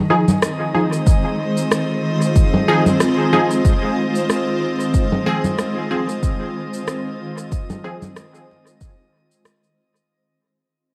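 Lightly reverberant and dusted with vinyl crackle, this meditative, spacious ambient dub excerpt at 93 BPM in F minor rests on a cloudy, blurred granular pad sustaining an Fm7 chord alongside a faint, glassy harmonics texture with drifting overtones, while a muted, detuned dub chord stab with a filter sweep, chorus, cassette-tape grit and dub echo joins at 0.1 s, tape-warm electronic congas, shaker and rim click enter at 0.3 s, and a deep, layered electronic kick arrives up front at 1.1 s, everything sinking into the long fade that begins at 3.2 s.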